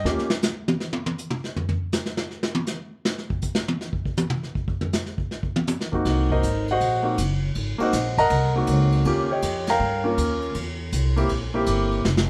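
This excerpt of a sophisticated, relaxed jazz piano trio opens with a brief touch of grand piano and pizzicato upright bass before the brushed drum kit takes a solo from 0.1 seconds. Swinging in 4/4 at 160 BPM, the drums sound muffled and gritty, with dark cymbals, a punchy kick, a medium-tuned snare and a rolled-off top, moving across hi-hat, ride, snare, kick and toms. The concert grand returns at 5.9 seconds as the soloing voice, intimate and natural, with deep bass, long sustain and audible action noise as it ranges between Bb3 and Bb5. The woody, growly upright bass rejoins at 6.1 seconds, low in the register between F1 and G2, as the harmony moves through Ab9, Eb9 and C7. All three instruments sit up front in a moderate club reverb, giving the trio a close, warm presence.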